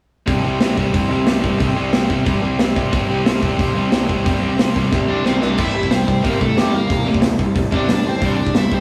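This rowdy, rebellious punk rock excerpt opens with a crunchy overdriven guitar up front and a bright distorted electric guitar, both picking a riff on a C5 power chord at a straight 181 BPM in 4/4. Beneath them a growly fuzz-toned electric bass sits in the background, while an acoustic rock drum kit sits up front with a punchy kick, a medium-tuned snare, hi-hat and crash cymbal. A drum fill at 4.9 seconds ushers in the next section. A high-gain lead guitar with a warm, distorted tone and digital delay enters at 5.1 seconds to carry the melody. The harmony then moves to a C chord at 5.6 seconds. The recording has the rough, saturated feel of a rehearsal room, touched with light reverb.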